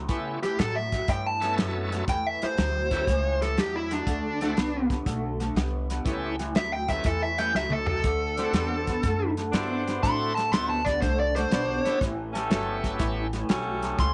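A dark, overdriven lead guitar sits up front, soloing throughout this gritty, laid-back electric blues shuffle, cut from a longer piece. Beneath it, a lo-fi, slightly broken-up rhythm guitar with phaser plays the riff over thumpy, woody upright bass, a dry soul drum kit with a tight kick that adds a fill at 7.5 seconds, and a shouting tonewheel organ with key click, overdrive and slow rotary speaker, moving between A7 and D7. A punchy, tight horn section with octave doubling joins at 8.4 seconds with jazz-style stabs, in a small room ambience.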